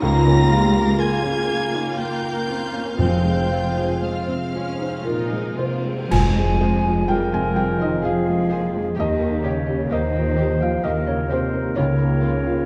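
A sorrowful, bittersweet film score in a slow, rubato triple metre opens with strings, flute, piano, horns and harp together: a close, expressive violin section carries the melody while a hollow, pure concert flute and a more distant, focused second violin section weave second lines above a soft, felt-muted upright piano. Beneath them, a lush viola section sits in the background, a mellow French horn section holds sustained chords, and a very quiet concert harp rings out fingerpicked arpeggios. Cellos, bowed with portamento, and a smooth, even double bass section ground the harmony with a deep, warm bass. At 3.0 seconds, dark cymbals with a cymbal swell, clash cymbals and concert bass drum join timpani played with medium mallets, and a full-band accent marks the turn into the second section around 6.1 seconds. From 7.1 seconds a distant, roomy solo clarinet adds a classical-style line of its own, all set in a dark production with a lingering scoring-stage reverb, cut from a longer piece.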